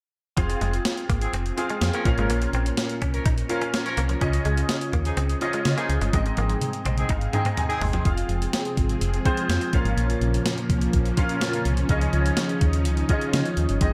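A straight 4/4 pulse at 125 BPM drives this uplifting, nostalgic slice of 1980s-style pop, where a thumpy, overdriven 12-bit drum machine and a punchy, round FM bass sit up front beneath a clear concert grand piano with audible action noise and a chorused sheen, while a twangy, direct-recorded clean guitar riff with lush chorus and analog delay and distant, mellow horn stabs color the background until a drum fill at 6.1 seconds and a piano fill at 6.6 seconds lead into a second section where a vintage sawtooth string machine with cellos adds slow-attack sustained chords over the Fm, Bbm and Dbadd9 progression.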